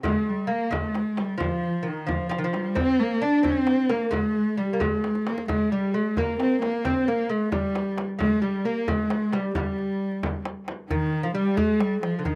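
Hypnotic and longing, this short cut from a longer Persian modal ensemble piece in G dastgah shur moves at 88 BPM in a straight 6/8, with a dark, woody bowed cello carrying the vibrato-laden melody up front over a mellow, delicate fingerpicked lute on gut double strings with a slapback echo, while a tight, close and dry tombak is struck with hard hands, a drum fill arrives at 5.0 seconds, and a deep, band-limited vintage frame drum sits in the background until 10.8 seconds, all captured outdoors with little reverb.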